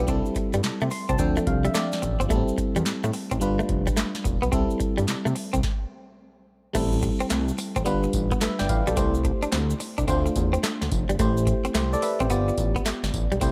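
A swung sixteenth-note groove at 108 BPM in 4/4 drives this flirty, upbeat new jack swing excerpt in C major. A booming analog drum machine sits up front with a deep kick, crisp snare, metallic hats, handclaps, tambourine and crash, its snare, claps and hats given a short room, while a grainy tube shaker stays in the background. Underneath, a fat, detuned analog bass blends sawtooth and square waves with a saturated filter pluck. A glassy FM electric piano with a bell-like attack and warbling chorus carries the chords and plays a fill at 0.6 seconds, and a clean, compressed electric guitar recorded direct repeats a riff through lush chorus. After the electric piano's stop at 5.6 seconds, where the harmony drops out, a second section begins at 6.7 seconds, cycling through Am7, G7, C6 and Dm7 in a dark, warm production with light reverb and digital ambience.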